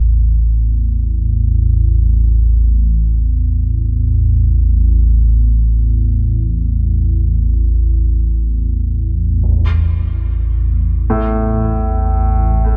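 An ominous, rumbling drone with a phaser opens this unsettling, cavernous dark ambient excerpt up front in a moderate cathedral reverb and cassette-tape haze, before a huge, bright, filtered impact strikes in the background at 9.4 seconds and a boxy, intimate grand piano with audible action noise enters at 11.1 seconds, its arpeggios trailing into a diffuse delay.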